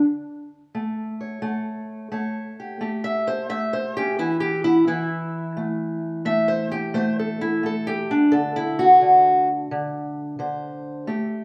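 Set in a large, reverberant studio room with a live feel, this laid-back, soulful acoustic country blues excerpt at 87 BPM features a single up-front, fingerpicked parlour steel-string guitar, dark, woody and boxy with old strings, swinging in A mixolydian over A7, a chordless stretch at 4.2 seconds, then A5 and D7 through both passes of its repeating section.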